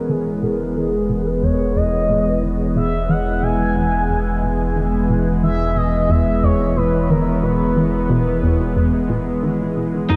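Ambient, sequencer-driven space music with a luminous, expansive mood, where a thick, detuned unison pad holds bright chords up front over a deep, ring-modulated analog bass and a round, chorused pluck riff in the background, while a smooth, expressive synth lead with vibrato and a moving notch sings the melody until 8.1 s, a twangy twelve-string electric guitar appears at 10.1 s just as this fragment of a longer piece cuts off, and it is all bathed in a huge, wet reverb within a dark production.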